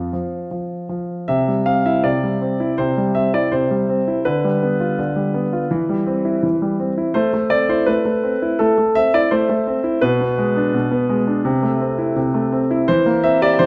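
A clear, up-front concert grand piano, natural in tone with deep bass and long sustain, plays this elegant, graceful classical-period sonatina alone in C major at a rubato 83 BPM in 4/4, opening on a high F5 before settling at 1.3 seconds into a passage that moves from C through G7/D, C/E, Am and Bm6 toward C7/E, all set in the wet reverb of a recital hall and cut from a longer piece.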